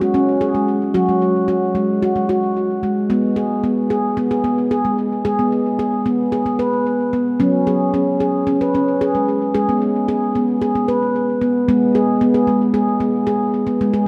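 In a straight 4/4 feel, this short, meditative world excerpt features a lone handpan, ringing and mellow with a stainless-steel sheen, played up front with delay inside a wet cathedral reverb, its hypnotic phrases alternating between F#5 and G#m before a brief new section arrives at 11.7 seconds.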